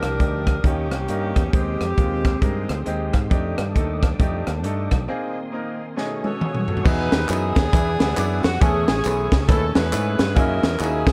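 This uptempo gospel excerpt opens at 135 BPM in a swung 4/4, with an edgy, close-miked saxophone section carrying the melody over bright grand piano, growly fingered electric bass and a crisp fusion drum kit, all in an uplifting, hopeful mood. The piano's brilliant, intimate tone lets its action noise come through. A very quiet tonewheel organ with key click and slow rotary speaker holds sustained chords, and softly bowed studio strings add sustained chords beneath. The saxophones, touched with light vibrato and tape echo, drop out after their first phrase and return at 6.2 seconds. A break and a drum fill with punchy kick and high-tuned snare lead into a key change from Eb major to E major at 6.9 seconds. There the strings have stopped, and a background layer of group handclaps and tube shaker joins the band through a small room ambience.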